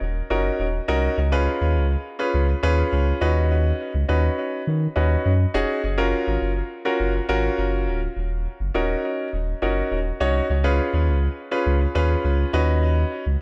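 A deep, full sub bass with an octave layer opens this dance-pop excerpt at 0.0 seconds, its sine-and-triangle tone striking with a fast attack and holding sustained, mellow notes up front in the mix. Almost at once, at 0.3 seconds, a warm baby grand piano joins as accompaniment, polished and present, its playing carrying a tape echo. The mood is euphoric and upbeat, moving at 103 BPM in a straight 4/4. The harmony cycles through D#m7, C#7, Badd9 and F#maj7 before returning to D#m7, passing through C#7 again and closing on Badd9/D#. A moderate spring reverb and an echo-heavy mix give the short passage a roomy, lingering sheen.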